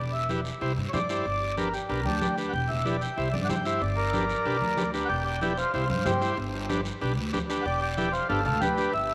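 A straight, festive cumbia groove in 4/4 moves along briskly, with distant, soft-handed congas sitting in the background and a raspy guiro scraping along beside them. Up front, a reedy, full-bodied accordion carries a sunny solo melody through tape echo, while a woody pizzicato upright bass anchors the low end and a buzzy vintage combo organ with light vibrato fills in the accompaniment. A moderate plate reverb gives the whole short cut a spacious glow as the harmony cycles through Em, C and G before settling on Gadd9 near 8.3 seconds.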